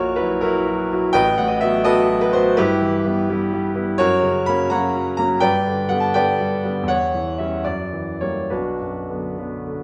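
A brilliant concert grand piano, up front with deep bass and long sustain, carries this bittersweet, passionate romantic character piece alone across the 9.8-second excerpt from a longer work. Set in B minor and tuned to A4 = 436 Hz, it moves in a rubato 6/8 at roughly 68-86 BPM in dotted quarters, its harmony passing through chords such as B7/A, Em/G and C#dim/E before an F#7b9 resolves to Bm. The playing spans a range from A1 to B5 and is bathed in the lush reverb of a recital hall.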